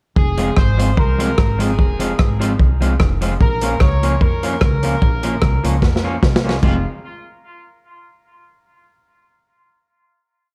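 Ska in F minor at 149 BPM with a light swing, this short, mischievous and driving piece sets a bright, punchy horn section on a motif-based call-phrase melody trailing dub echo, over a woody, thumpy upright bass walking with slides, a gritty, up-front breakbeat kit with dark cymbals and a side-stick backbeat, and a slightly broken-up electric guitar chopping off-beats in spring reverb, moving from Fm to Bbm before a drum fill at 5.8 seconds leads to a final chord from 6.6 seconds.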